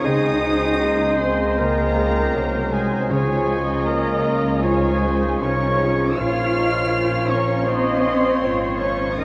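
Serene and warm, this slow romantic movement for symphony orchestra unfolds with a gentle rubato in a short passage cut from a longer piece. Muted violins, veiled and con sordino with light vibrato, carry the melody high above, while a second violin line, a pure, mellow flute section, a clear clarinet and a soft-attacked oboe weave supporting lines beneath it. Muted violas sit distant in the background alongside a bassoon, and a dark French horn section holds very quiet sustained chords. A ringing concert harp spreads fingerpicked arpeggios through the texture, as lush muted cellos and soft-attacked double basses, the latter entering at 0.1 seconds, anchor the bass. Timpani struck with hard mallets appear, barely audible, between 3.1 and 4.2 seconds, and the whole ensemble rests in a vast, echoing cathedral reverb that lingers long after each phrase.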